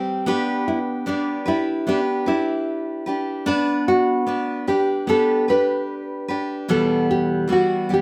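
Acoustic pop in G major at 75 BPM with a lightly swung sixteenth-note feel, this carefree, sunny excerpt sets a picked steel-string dreadnought guitar, full-bodied and up front, as accompaniment from the opening moment. At 0.3 seconds a fingerpicked nylon-string guitar with a deep classical tone joins to carry the melody, moving from a G/B chord toward Emadd9 at 6.7 seconds. Light reverb gives the warm, up-front pair a gentle sense of space, and the tuning sits slightly below standard pitch.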